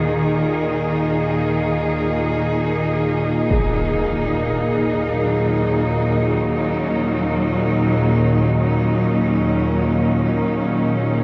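Drenched in a huge ambient reverb and the warbling pitch drift of a worn old cassette, this dark ambient drone drifts in free time with an ominous, vast mood. A rich, lush symphonic cello section sits up front, its bowed, vibrato-laden sustained chords set over a calm, detuned organ-like drone with a slow attack, chorus and ring modulation. At 3.5 seconds a huge, bright, low-pass-filtered impact lands as the harmony shifts from Eb5 to Gb69/Eb, and a metallic bronze singing bowl, struck with a felt mallet, rings meditatively with slow beating in the background.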